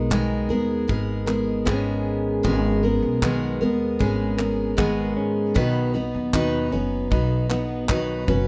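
Acoustic pop with a tender, reflective mood in a straight 4/4, this short excerpt centres on a full-bodied, up-front picked steel-string acoustic guitar with fresh strings and audible finger squeak, moving from G#madd9 to B at 5.6 seconds. A woody, growly pizzicato upright bass sits beneath it, while a clean, compressed electric guitar adds a soft second line in the background. A modern studio kit enters at 0.1 seconds with a tight kick and handclaps that sound close and dry in a small room.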